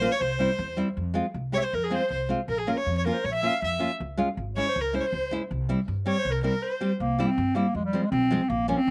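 Klezmer at 159 BPM in 2/4, bittersweet and soulful, with a mellow, soft-attack clarinet carrying the melody up front in a classical style while a rich, boxy violin played with vibrato adds a focused second line until 6.9 seconds. Beneath them a full-bodied, fingerpicked nylon-string guitar, with audible finger squeak, comps through chords moving from C to Fm, Bbm and Db5, and a woody, thumpy pizzicato upright bass on gut strings anchors the low end. The dry outdoor sound keeps the parts close and intimate, and a brief break at 6.6 seconds leads into a new section at 7.0 seconds before this fragment of a longer piece cuts off.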